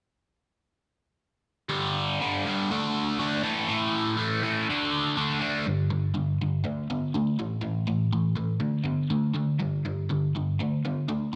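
Sunny and confident, this rock excerpt at 122 BPM in a straight 4/4 features a lone crunchy, bright overdriven electric guitar, picked, double-tracked and placed up front with a phaser, cycling through G5, D5 and A5 power chords from 1.7 seconds, moving into a second section at 5.7 seconds, and sitting in a moderate echo-chamber reverb.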